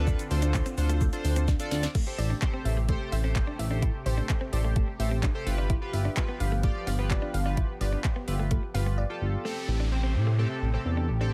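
A straight dance-pop pulse drives this bittersweet yet energetic passage, cut from a longer piece, with a produced electronic R&B drum kit up front: soft kick, sharp snare, tape-tinged hats, handclaps, shaker and a crash, capped by a short fill before the chords shift. A very quiet, intimate concert grand piano with audible action noise touches a single high melody note at the very start. Underneath, a dark, glossy synth bass with chorus and sidechain pumping sits prominently, while a retro chorused polysynth built from pulse and sawtooth tones with a sub octave and ring modulation carries the accompaniment. In the background, a lush, thick, detuned unison pad holds sustained chords with phaser and pumping, and a clean, compressed, direct-recorded electric guitar picks a riff beneath a subtle chorus. A crystalline, nasal wavetable pluck with a noise layer takes over the melody at 2.2 s, the drums drop out at 8.9 s, and an electronic downlifter sweeps through the final stretch from 9.4 s, all in a dry, close-sounding mix over minor-seventh and dominant-seventh harmony.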